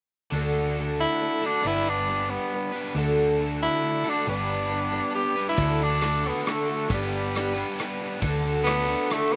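Folk rock with a heartland rock lean, this hopeful, open-road passage moves at 137 BPM in a straight 3/4 in D major, cut from a longer piece and alternating between D and G chords. A boxy, shimmering twelve-string acoustic guitar and a crunchy, double-tracked overdriven electric guitar riff play from the start alongside a round hollow-body short-scale electric bass, while a raspy tenor saxophone with slapback echo carries the melody up front from 1.0 s, gritty and punchy with vibrato. An unplugged drum kit with dark cymbals, a tight kick and rim clicks played with bundle sticks joins at 5.6 s as the second section begins, all in a dry outdoor sound with little reverb.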